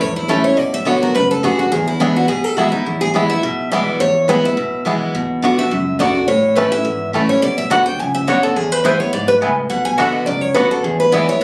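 A lonesome, haunting bluegrass passage opens on a steel-string guitar solo: one dreadnought plays the lead up front, with bright fresh strings and audible finger squeak, while a second full-bodied guitar picks the accompaniment and a woody, thumpy pizzicato upright bass sits in the background. A twangy, percussive fingerpicked banjo adds its own melody from 0.3 s, and a double-strung mandolin joins with bright stabs at 7.7 s over a swung groove. Captured on a phone in a small room with club reverb, the sound carries a moderate room ambience.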